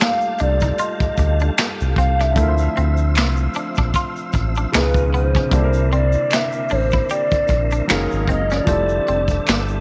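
This brief excerpt from a longer piece has a studio sound with light reverb and a smooth, sensual neo-soul and R&B mood at a relaxed 76 BPM, its sixteenths swung gently. A hollow, woody synth lead with a clarinet-like tone carries the melody, its mellow square-and-triangle voice thickened by chorus, vibrato and a slapback echo. Beneath it, a clean, picked semi-hollow electric guitar plays a second line through a phaser, while a concert grand piano with audible action noise and deep lows supplies the accompaniment. A tonewheel organ holds sustained chords through a fast rotary speaker and chorus vibrato, and a vintage brush kit sits up front with a punchy kick, medium-tuned snare, hi-hat and finger snaps, joined by a quieter, saturated layer of snaps and tube shaker. A dark, round analog bass enters at 0.4 seconds, and the harmony drifts through rich extended chords from Ebmaj9#11 and Dm9 to Db9, C9, Gbmaj13 and Fmaj13.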